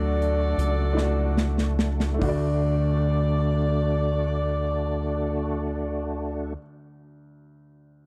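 A dry, close 1970s-style studio sound with a touch of studio reverb frames this short, reverent and hopeful slow gospel excerpt in 6/8. A clear jazz-style saxophone section carries the melody with vibrato over a woody upright piano, sustained chords from a percussive, lightly overdriven tonewheel organ with slow rotary speaker and chorus vibrato, and a dark, round fingered electric bass sitting up front. A punchy acoustic drum kit enters at 0.2 s and plays a fill as the music slows into the move from Dmaj7 to D, then drops out at 2.4 s, and the piano rings on alone from 6.6 s.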